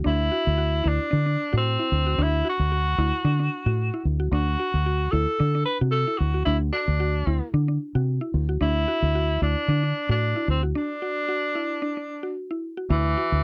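A lightly swung 4/4 afrobeat groove at 112 BPM in D mixolydian sets a hypnotic, joyful mood, carried by a dark, round, foam-muted fingered electric bass that sits punchy and up front, while a woody, mallet-like FM synth pluck with chorus spins mellow arpeggios. Over the harmony moving from Cadd9/D to Dadd9 at 4.3 seconds, a breathy, whispered tenor saxophone plays an intimate solo melody with vibrato, soft attacks and scooped notes. The dry, close 1970s-style studio sound keeps every part near, and a break arrives at 10.8 seconds before this excerpt from a longer piece ends.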